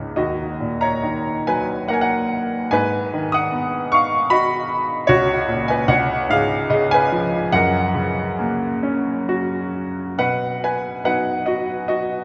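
Classical solo piano in F# major and 3/4 at 65-78 BPM, this tender, calm excerpt from a longer piece features a clear, worn grand piano placed up front, playing with rubato from C#2 to D#6 through chords moving from D#m to G#m7, F#/C#, C# and F# before arriving on B at 10.2 seconds, all bathed in a wet cathedral reverb that opens into a vast, echoing space.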